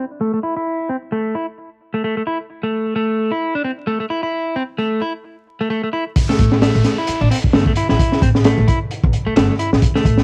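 Breakbeat excerpt at 131 BPM in A minor with a swung, energetic and raw feel, opening on a clean, picked electric guitar riff that sits up front with overdrive, cassette tape and analog delay while a filter sweeps across it. At 6.2 seconds the drop lands: a crunchy, gritty breakbeat kit with a high-tuned snare and tight kick comes in saturated and up front, a faint electronic downlifter sits in the background, and at 6.4 seconds a woody, thumpy pizzicato upright bass joins. The whole recording has the hazy feel of a home cassette, with vinyl crackle, a low-pass filter and light reverb.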